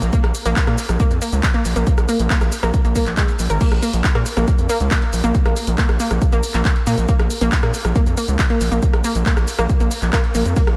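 A straight 4/4 pulse at 138 BPM drives this dark, hypnotic slice of peak-time techno in Bb minor, tuned slightly low to A4 = 436 Hz. A punchy analog kick sits up front with a small-room character, joined by a drum machine of crash and ride cymbals, handclaps, hi-hat, rim click and shaker, whose hats, percussion and cymbals pump against the sidechain. Alongside them, a gritty, distorted synth bass, also up front, blends square, sawtooth and sine tones with oscillator sync and a resonant filter sweep, sustaining and pumping between Ab1 and Bb2. An analog pluck carries the riff from Ab3 to Bb4, its detuned sawtooth and pulse waves shaped into a round, bright tone with ring modulation, chorus, tube saturation, sidechain pumping and a diffuse ambient delay. Light reverb surrounds the mix of this short cut from a longer piece, which holds a single section for its 10.8 seconds.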